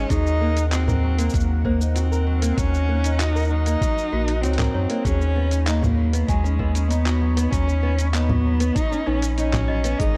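A bowed, expressive cello sings the melody up front with vibrato, portamento and delay over fingerpicked nylon-string guitar arpeggios with delay, a round sine sub bass, a bell-like, slightly out-of-tune celesta with 12-bit sampler grit and delay, and a smooth detuned sawtooth pad with chorus in the background, while muffled, pitched-down, overdriven sampler-style drums with studio reverb (a thumpy electronic kick plus cabasa, congas, handclaps and hi-hat) set a straight 97 BPM folktronica pulse as the chords move from Ebm to Badd9/D# at 5.1 seconds, giving this delicate, pastoral excerpt a dark, warm small-room feel.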